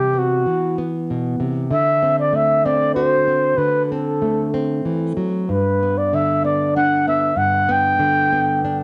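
A home cassette recording with a short, wet studio reverb lends this brief passage of an acoustic folk-pop ballad a nostalgic, tender glow. At 95 BPM in 3/4 and G major, a breathy, whispered flugelhorn carries the mellow melody up front, with soft attacks and light vibrato, while a fingerpicked nylon-string guitar in classical style accompanies throughout, its finger squeaks audible. The harmony moves from Cmaj7 to D7 at 1.7 seconds and settles on G at 5.5 seconds, both parts colored by the tape.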